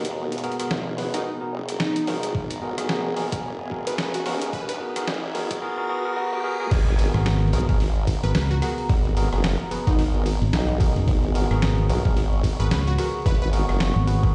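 A saturated, up-front formant-sweep wobble bass drives this funky, swaggering glitch hop excerpt with a swung 16th feel, alongside a barky, overdriven tine electric piano playing filter-swept stabs with dub echo, a gritty pitched-down boom bap drum kit, a thumpy overdriven electronic kick, a catchy plucky unison lead with phaser in the background, a moody analog pad holding sustained chords, and an electronic riser and impact, all building until the drop at 6.7 seconds, where a punchy fingered electric bass enters at 7.1 seconds, everything heard in a bare room with large studio reverb.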